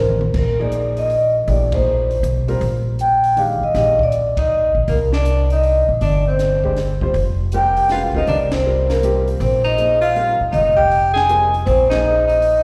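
A swung 3/4 pulse at 159 BPM carries this hypnotic, searching modal jazz excerpt, heard live through a venue's PA with recital-hall reverb. Up front, a soft-mallet vibraphone with slapback echo rings out a mellow, metallic melody over woody upright bass and a dark, smooth cocktail kit with a high-tuned snare and punchy kick. A vintage grand piano comps in two stretches, and a clear alto saxophone enters at 4.4 s with a second line, both touched by slapback echo, over shifting sus chords punctuated by band accents.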